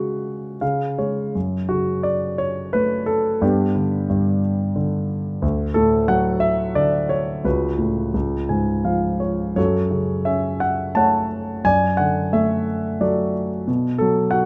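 Close, detailed microphones place the concert grand piano up front, with a moderate recital hall reverb giving the notes a gentle halo. This is a short excerpt of lyrical classical solo piano in 3/4, played with rubato so the beats fall unevenly and the pulse breathes freely. The instrument has a warm tone with deep bass and a short sustain, and it covers a span from C#2 up to A5. The mood is bittersweet and moody, with the harmony moving from F# minor through G and D before returning to F# minor. Brief piano fills arrive at 0.2 seconds and again at 8.1 seconds, and a bare B5 chord sounds near 13.7 seconds.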